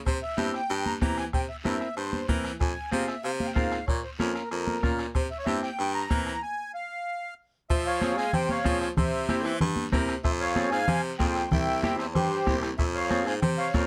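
Cumbia at a brisk 189 BPM in F harmonic minor, this fiery, passionate excerpt puts a reedy, sweet accordion with light tremolo tuning up front on the melody over a punchy, forceful baritone saxophone bass line with vibrato, joined from the start by a soft-beater bombo and a very quiet, raspy guiro, while a clean, bright semi-hollow electric guitar enters at 0.4 s alongside high-tuned congas, all in a close, detailed room with light reverb, before a full stop at 6.4 s gives way to a second section from 7.7 s moving between Fm, C7 and C.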